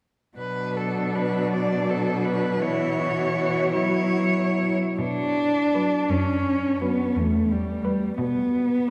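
Classical, elegiac and yearning, this short excerpt of a cello ensemble unfolds in B minor at a slow, rubato 6/8, around 44-59 BPM, moving from B minor into E minor. A single cello sings the melody with intense vibrato and a smooth top, while a dark, up-front second cello adds an expressive line with portamento. Beneath them a clear, even accompanying cello and a focused bass cello sit farther back, all four bowed by individual players and bathed in the long reverb of a church, with the melody ending at 8.1 seconds as the others continue to 8.9.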